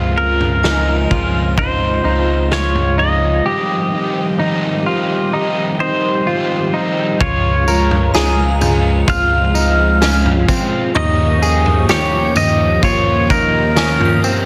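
Floating and blissful, this dream pop excerpt drifts at 64 BPM in a straight 4/4. Its harmony moves from Dbmaj7 to Abmaj7, then from Dbmaj7 to Eb7 in its second half. A chorused synth bass with dark, glossy pulse and sawtooth tones sits underneath, while a vintage drum kit brings a gritty, saturated feel with a rolled-off top: a punchy, softly clipped kick, medium-tuned snare, tambourine and toms. An overdriven semi-hollow guitar adds harmonic tremolo and analog chorus to its accompaniment, and a clean, hollow-bodied guitar plays arpeggios through lush chorus and digital delay, with a swirling phased analog pad holding detuned sustained chords in the background. Above them, a bright, twangy pedal steel carries the melody with slide and volume swells through digital delay, and a shimmering FM bell with a halo glints faintly up high from 0.6 to 2.5 seconds, returning at 8.1 seconds. The mix sits in a moderate concert hall reverb and has a dense, heavily limited master.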